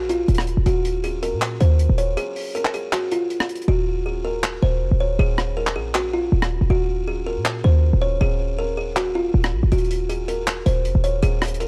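A buzzing, woody kalimba melody with a thumbnail pluck and digital delay opens this dark, hard-hitting half-time trap fragment, alongside a punchy, fast-attack 808-style bass with a noise layer and a dry, up-front acoustic funk kit of handclaps, hi-hat and rim click. A break arrives at 2.2 seconds, and the hi-hats fall silent from 3.7 to 9.7 seconds as the harmony shifts between minor, power-chord and suspended colours. The dark production sits in studio reverb under a layer of vinyl crackle.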